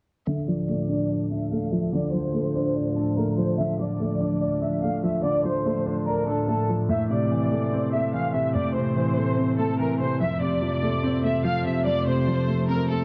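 A lush, vibrato-laden string section carries the melody up front in this dark, cold half-time hip hop piece, cut from a longer work and moving from Dm to Am at 6.9 s and F at 10.2 s. A mellow grand piano with audible action noise accompanies closely, while a glassy, warbling FM pad with chorus holds slow-attack sustained chords underneath. A filter sweep runs throughout, and a hall reverb gives the dark, warm production a roomy depth.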